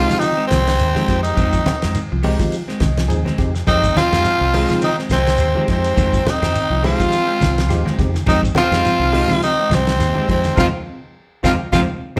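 Recorded as a band playing live in one room, this afrobeat excerpt carries a moderate large-studio reverb, with a damped 70s drum kit giving a dry, fat-snared, dark-cymbaled pulse at 104 BPM in a swung 4/4. Set in F minor over an Fm7 chord, the mood is defiant and funky, led up front by a raspy, gritty tenor saxophone melody with vibrato, backed by very quiet second lines from a bright alto saxophone with light vibrato and a punchy, vintage-toned baritone saxophone. A fingered electric bass sits direct and amped beneath, while a bell-like tine electric piano, a clean picked electric guitar playing arpeggios and a second guitar at the edge of break-up throwing stabs all sit in the background. Congas with a thin, low-tuned skin, a grainy shekere and woody claves, entering at 3.7 seconds, fill out the percussion. The electric piano takes a fill between 2.5 and 3.7 seconds, and the band hits an accent from 10.6 seconds, capped by a drum fill at 11.7 seconds.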